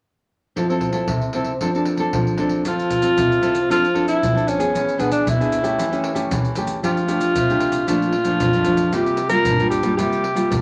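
A full-bodied, fingerpicked nylon-string guitar opens this lively, joyful samba and choro excerpt at 0.6 s, alongside a deep surdo, pandeiro and maracas played with soft hands in a live room, moving at 115 BPM in F major. At 2.7 s a breathy alto saxophone takes the solo melody up front in a vintage jazz style, its subtone and scooped notes sounding warm. A wet club reverb colours the sound as the harmony moves from Fmaj7 through E7 and A7/E to Bbmaj7 and C7sus4.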